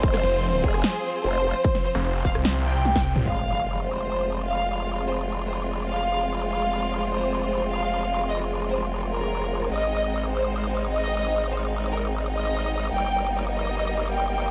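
This heavy wobble dubstep excerpt moves in a half-time 4/4 feel and carries a chaotic, aggressive mood. It opens mid-drop, where a punchy, overdriven electronic kick and a big-room dance kit of crisp hats, rim clicks, a punchy snare and toms hit hard up front, with a drum fill from 2.9 seconds closing out the drop at 3.3 seconds. A snarling sawtooth bass, detuned and distorted with a moving notch, growls alongside a wobbling, formant-filtered growl bass that carries chorus and overdrive and keeps churning on low notes for the whole clip. Over this, a lush violin section plays a smooth, vibrato melody with dub echo, while a bright, close string section holds sustained chords roughened by vintage 12-bit sampler grit, sidechain pumping and a low-pass filter. An electronic impact lands at 3.3 seconds as the music shifts into a new section built on F minor, later moving to Ab and Eb/G. Light digital reverb surrounds the mix, and its top end stays dark and rounded.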